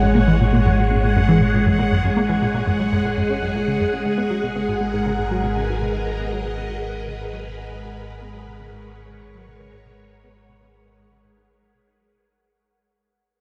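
Ambient, sequencer-driven space music in G# minor at 119 BPM, expansive and cosmic, where a tight, driving sequenced synth riff with detuned sawtooth and square-wave filter plucks, chorus, phaser and tape echo runs alongside bright, swirling vintage string-machine chords up front, over a warm, evolving pulse-width-modulated analog drone on G#1 and a faint bubbling, resonant stepped-filter texture on F#5, all bathed in a huge dark reverb as the chords move from F#/G# to G#madd9 at 4.1 seconds and the synth arpeggio fades out across this 12.1-second cut from a longer piece.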